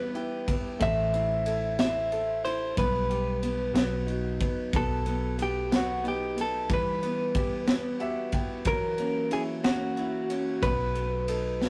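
A slow six-eight lilt carries this dramatic, aching pop ballad excerpt, with a punchy kick, high-tuned snare and ride cymbal on an airy, polished drum kit alongside a dark, foam-muted fingered bass. A clean, compressed electric guitar carries the picked melody, while a second direct guitar sits up front playing arpeggios through tape echo, and a clear, worn grand piano with deep lows supplies accompaniment, stepping forward with a fill from 7.7 to 8.7 seconds. The harmony moves through aching minor changes to a dominant chord, all captured in a small, rough rehearsal room with saturated coloring.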